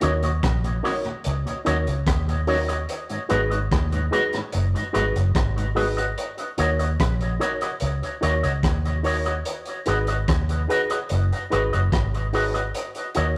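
A rough rehearsal-room recording in a stone-walled space carries this hypnotic, meditative roots reggae passage at 73 BPM in G# minor, where a round, foam-muted fingered bass and a gritty, saturated breakbeat kit of kick, hi-hat and rim click sit up front, the drums and a twangy, envelope-filtered electric guitar both trailing dub echo, while a worn, slightly out-of-tune reed electric piano stabs and a mellow tonewheel organ with chorus vibrato and slow rotary speaker hums in the background before dropping out at 5.9 s, all over a slow sway between D#m7 and G#m7.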